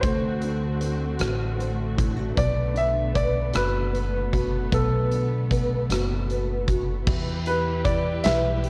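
Heard through worn, warbling cassette tape with drifting pitch and a light small-room reverb, this aching, dramatic six-eight pop ballad fragment sets a natural-sounding grand piano melody over double-tracked, thumb-plucked nylon-string guitar, close, soft-attack bowed sul tasto strings with vibrato, a woody, thumpy pizzicato upright bass up front, and a huge arena drum kit with a punchy kick, rim clicks, hi-hat and crash, all moving from D7 to Bm7 before settling on E minor at 7.1 seconds.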